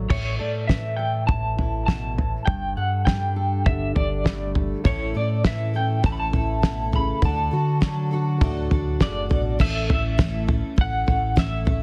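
A cloth-damped, thuddy drum kit sits up front in this nostalgic, uplifting indie folk excerpt, its fat snare, tight kick, toms and crash cymbal giving a dry, rolled-off weight to a straight 4/4 at 101 BPM in A mixolydian. Above it, an electric guitar through a small old amp carries the melody with a slightly broken-up, lo-fi, compressed tone and tremolo, while a fingered electric bass adds a round, amped low end. A dark fingerpicked steel-string acoustic guitar, with audible finger squeak, supports the harmony until 9.6 s. At 4.8 s a picked twelve-string acoustic guitar joins, its fresh strings shimmering and octave-doubled through analog chorus, filling out the building arrangement. The chords move from A5 through Gsus2, A and D before returning to A, heard in small room ambience with a dense, heavily limited modern master.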